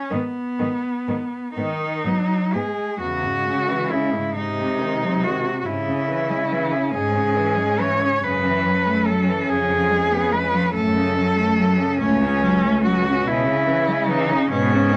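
A rich, focused solo cello opens this elegiac classical excerpt, carrying the bowed melody up front with vibrato, and three more cellos join at 0.1 s. The slow, yearning 6/8 pulse sits around 40-48 BPM in dotted quarters and moves with a rubato feel. A close second line in the background uses a soft attack and portamento, while a more distant accompanying cello adds its own expressive glides beneath. A warm, soft-attacked bass cello, also bowed with vibrato and portamento, anchors the ensemble from the low register. The harmony begins in G# minor and turns toward C# minor at 3.0 s, passing through chords such as G#7, F#m7 and C#7/E# before settling on C#m7/B at 13.3 s. A moderate studio reverb gives the group a mellow, intimate space.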